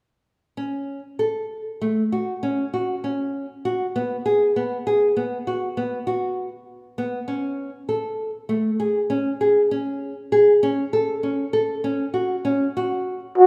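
A fingerpicked nylon-string guitar opens this pensive, hypnotic piece of contemporary chamber music, circling intimate, up-front arpeggios through F#m, G#m7 and Amaj7 back to F#m in a straight 11/8 at 198 BPM (eighths) under a moderate scoring-stage reverb, until the guitar stops at 13.2 s and a mellow, breathy flugelhorn enters alone at 13.4 s with a single scooped, jazz-style F#4 carrying a light vibrato just as this excerpt cuts off.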